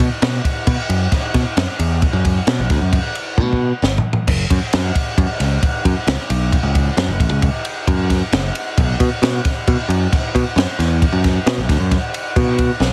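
A dry, heavily compressed recording with a radio-like sound and little reverb opens this short cut from a longer math rock and midwest emo piece, moving at 133 BPM in 5/4 with a straight feel. The mood is intricate and playful, carried by just two parts that run together from start to finish. A modern picked electric bass sits up front with a bright, direct tone, ranging from F#1 to B2. A compact cocktail drum kit, recorded acoustically in a small room, sounds dark and smooth with a rolled-off top, pairing a high-tuned snare and punchy kick with ride, crash and toms. A drum fill arrives from 3.4 to 4.3 seconds.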